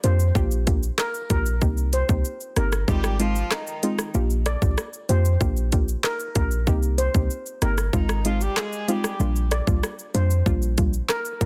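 A hypnotic, sultry dancehall groove opens with a mellow, shimmering steel pan melody carried on digital delay over a soft, round chorused pluck, a deep, boomy 808-style bass up front and a tight, overdriven island pop kit of kick, rim click, handclaps, hi-hat and shaker, while a dark, distant horn section with light vibrato and delay joins from 2.9 to 9.4 seconds, the whole cut sitting dry, dense and heavily limited.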